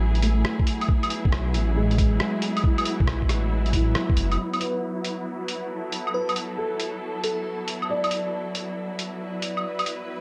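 Cassette-tape grain and a moderate recital hall reverb give this wistful, ghostly future garage excerpt at 137 BPM in B dorian a hazy, distant sheen. A soft, thick-felt muted upright piano and lush, bowed symphonic strings hold Dsus2 and then Bm7 chords, both pumping against the sidechain, while a muffled, pitched-down sampler kit of claves, hi-hat and rim click swings up front; a thumpy kick and a deep, rumbling detuned saw bass both fall away by 4.4 seconds. From there a filter sweep sets the strings drifting, and at 6.1 seconds a sparkling, bell-like FM electric piano with chorus and tremolo offers a brief background melody.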